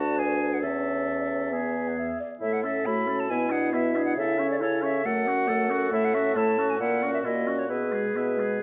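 From the first moment a spirited, graceful classical-period wind quintet, cut from a longer piece, sounds together: an airy, up-front silver flute with tongued, straight tone and rolled-off highs carries the melody over a distant oboe's vibrato-laced second line, a dark clarinet tucked behind and a mellow, soft-attack French horn as accompaniment, and a warm bassoon with light vibrato on the bass, all heard through close, detailed microphones in a recital hall's moderate reverb with vinyl crackle as the harmony moves from Bm/D through F#m toward a half-close on E/B at 7.7 seconds.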